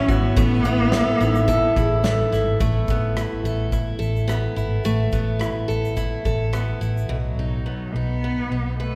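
A round, dark, foam-muted electric bass sits up front in this carefree, sunny acoustic pop piece, moving at 107 BPM in 4/4 with a light swing on the sixteenths. A picked steel-string acoustic guitar carries the accompaniment throughout, its finger squeak audible, while a mellow mandolin with doubled strings adds picked arpeggios until 3.2 seconds. A distant, expressive bowed cello plays the melody with vibrato and portamento, dropping out at 2.0 seconds and returning at 7.1 seconds as the harmony moves from Asus2 to B. In the background, an airy vibraphone struck with medium mallets rings with fast motor vibrato as a second line. A loose indie drum kit with punchy kick, medium-tuned snare, rim click and shaker plays in a pumping room with a rolled-off top until 7.1 seconds, and a cathedral reverb gives the piece, cut from a longer work, the spacious wash of a church or concert hall.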